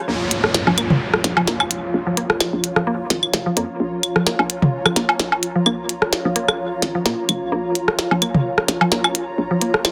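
A bubbling stepped-filter texture of detuned sawtooth, tucked in the background with chorus and reverb, and a cloudy granular pad built from blurred sine tones open this cool, hypnotic minimal techno fragment, cut from a longer piece in Bb minor at 129 BPM. A woody, round, mallet-like synth pluck carries the riff, coloured by chorus, phaser, cassette-tape grit and dub echo, while a hollow, bouncy FM bass knocks beneath it, and a downlifter sweeps through until 3.8 seconds. From 0.3 seconds a minimal click drum kit sits up front with clicky, tape-tinged hats and a tiny, softly clipped snare, swung lightly on the sixteenths. A layered percussion kit joins at 0.4 seconds with claves, rim clicks, toms and woodblock, its hits trailing into dub echo. The whole track rests on a single Bb minor chord inside a damp small room, pressed into a dense, heavily limited modern master.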